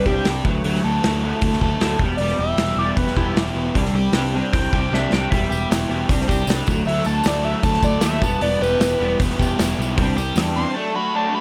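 A straight 4/4 pulse at 154 BPM drives this moody, restless indie rock passage in E minor, with a loose, up-front acoustic kit of tight kick, medium-tuned snare and hi-hat pumping in a small room, a drum fill at 4.9 seconds, and a jingly tambourine joining in the background at 5.3 seconds. Over chords of Dadd9, Em and Csus2, a screaming, guitar-like synth lead solos throughout, its sawtooth and pulse-wave tone distorted and swirled by phaser, vibrato and tape echo. Beneath it, a crunchy overdriven guitar and a twangy, slightly broken-up guitar through a small old amp play riffs, anchored by a fuzz-laden picked bass, all under light room reverb.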